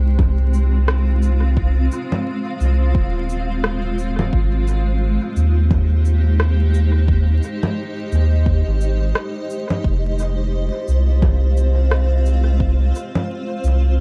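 Ambient dub in F minor at 87 BPM, this meditative, deep passage, cut from a longer piece, moves in 4/4 with a 59% swing on the sixteenths. A soft dub sub bass sits up front, round and sustained with a fast attack, ranging from Eb1 to Eb2 and carrying the weight of the mix throughout the 14 seconds. Above it, a granular cloud pad holds sustained chords between Ab3 and G5, its blurred, detuned unison tone evolving with a moving notch and a long release, bathed in its own built-in reverb. Electronic congas, cabasa and rim click, tape-warm and re-recorded in a small room, are thrown into dub echo, while a layered electronic kick drum adds a deep pulse until 12.8 seconds. The harmony rests on Fm, shifts to Abmaj7 at 4.3 seconds and returns to Fm at 9.8 seconds, all within a dark production with little reverb and a bed of vinyl crackle.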